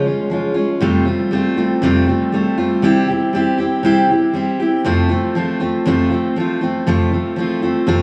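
Rock with an open-road, nostalgic mood at 119 BPM in F major, this excerpt features a single up-front, full-bodied jumbo steel-string acoustic guitar, picked solo from 0.0 to 8.0 seconds through analog delay with audible finger squeak, moving across chords of Db, Fadd9 and C before arriving on F at 4.9 seconds, all set in an echo-heavy mix with moderate spring reverb and small room ambience.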